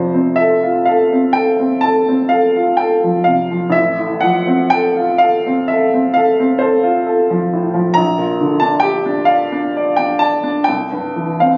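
Captured on a phone in a room with light club reverb, this short cut from a longer romantic classical nocturne presents a clear, natural-sounding baby grand piano placed up front, with short sustain, playing a dreamy, tender rubato line in 9/8 that moves from F through F/A and Gm/Bb to C, reaching from A1 up to Bb5.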